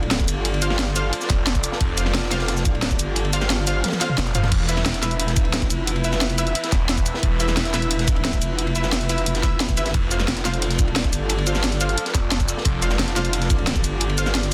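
A metallic, wobbling FM bass sits up front through this excerpt of dark technical drum and bass, its distorted, chorused tone driving a mechanical, dark mood at 177 BPM in 4/4 with a straight feel, in E phrygian. A snarling, detuned saw bass with a moving notch growls in and out alongside it, first at 1.3 seconds and again from 4.2 and 9.9 seconds, overdriven and bright. Bold, punchy orchestra-hit-like synth stabs with a filter pluck cut through with built-in reverb and tape echo, while a deep, moody analog pad holds sustained chords underneath, chorused and pumping against the sidechain. The drums layer a cracking, up-front electronic kit with cabasa, crash, hi-hat and toms, a knocking electronic kick that drops out for a drum fill from 3.8 to 4.5 seconds, and a gritty, saturated acoustic breakbeat kit with dark cymbals and a high-tuned snare sitting in the background. The whole section plays as a drop, with chords moving from F6 to E5 and back to F6, under light reverb in a dense, heavily limited modern master.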